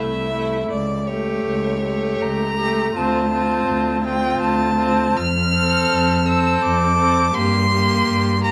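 A clear, focused first violin sings the melody up front, bowed with vibrato and sounding slightly distant as it ranges from C#5 up to F6. This slow, serene romantic movement for string quartet unfolds in 3/4 with a flexible, rubato feel. Beneath it, a second violin with a rich, smooth and even tone carries a second line, while a viola adds bowed accompaniment with its own vibrato. The cello is the closest voice, warm and expressive, with soft attacks and portamento sliding between its low bass notes. All four single players sound together throughout this 8.5-second fragment of a longer piece, moving through harmonies from C6 through A7/C# and Dm7 to F and Gm, set in a moderate scoring-stage reverb that adds a gentle halo.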